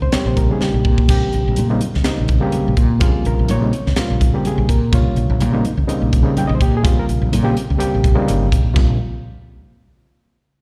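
Electric jazz fusion with a driving, funky swing, cut from a longer piece and heard live through a venue's PA in a recital hall, where a gritty, barky overdriven reed electric piano with plate reverb and slapback echo sits up front over a Bbm69 chord alongside a woody, round fretless bass, a crisp drum kit with a punchy kick, high-tuned snare and dark cymbals that plays a fill at 0.6 seconds, and very quiet, ringing congas.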